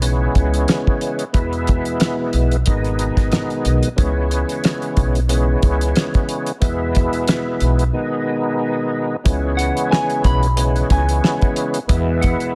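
A dry, up-front studio sound frames this moody, reflective boom-bap hip-hop excerpt. A thick, overdriven tonewheel organ with tape-worn grit, chorus vibrato and slow rotary swirl carries the chords over a growly, woody pizzicato upright bass and a cloth-damped, thuddy drum kit with a fat snare, tight kick, rim click and hi-hat. After a break at 7.9 seconds, a dark, slightly broken-up electric guitar with phaser enters at 9.6 seconds to play the melody.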